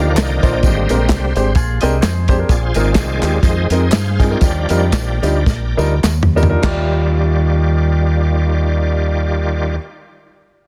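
A swung 4/4 groove between 97 and 129 BPM carries this hopeful, soulful uptempo gospel passage in Eb major, cut from a longer piece. A shouting, lightly overdriven tonewheel organ takes the lead with sustained chords, colored by a slow rotary speaker and chorus vibrato, while a woody upright piano with long sustain fills in accompaniment. Underneath, a round, punchy fingered electric bass sits up front beside a dry soul drum kit with a tight kick, medium-tuned snare, hi-hat, toms and crash, and close handclaps and tambourine add a quieter layer. A clean, twangy electric guitar slips in briefly at 1.6 s with a second line under subtle chorus. The harmony moves from Cm11 to Abmaj9#11 and settles on Ebmaj9, the tempo begins slowing at 2.5 s, and a drum fill arrives at 5.5 s before a new section opens. Light reverb and a small room ambience surround a dense, heavily limited modern master.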